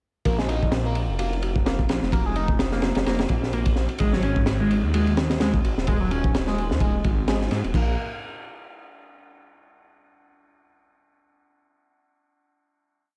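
The mix is echo-heavy under a light reverb, with the saturated bass and the crunchy drums sitting up front. This short, swaggering breakbeat piece moves at 128 BPM in 4/4 with a 56% swing on the 16ths, in B-flat minor. A crunchy breakbeat drum kit with a punchy kick, high-tuned snare, dark cymbals and a rolled-off top drives a looped break with edits, while a thick, swirling phased saw bass of detuned unison voices carries a dub-style line through its low register. On top, an overdriven synth lead repeats a 16-step sequence, its screaming, guitar-like tone coloured by distortion, vibrato, a phaser, subtle chorus and dub echo. The drop runs from 0.2 seconds, shifting from a Bb5 to an Ab5 chord at 4.0 seconds, and the parts fall away around 8.0 seconds as the piece closes on a final section.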